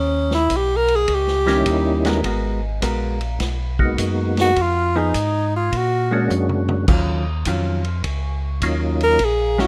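A close-miked tenor saxophone solos with vibrato over piping, lightly overdriven tonewheel organ bass with key click and slow rotary speaker, joined at 0.3 seconds by a vintage drum kit with dark cymbals and a punchy kick, then at 1.5 seconds by a mellow, round percussive organ melody with chorus vibrato and a clean, picked hollow-body jazz guitar, in a smoky, bluesy soul jazz organ trio excerpt at 103 BPM with a swung 4/4 feel, a drum fill at 6.3 seconds, and the rough, small-room sound of a home demo.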